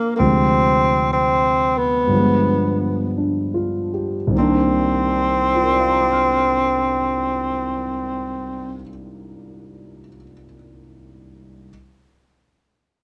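A moderate echo-chamber reverb wraps this dark, short fragment of a wistful, smoky jazz ballad in C minor, swung at 49-67 BPM and slowing through its first 4.3 seconds over Dm7b5, G7b9 and a closing Cm9. Up front, a solo tenor saxophone sings a low, subtoned melody with light vibrato and a smooth top. A mellow, intimate concert grand, vintage in character with audible action noise and deep bass, accompanies it and carries on alone from 8.8 s to 11.7 s.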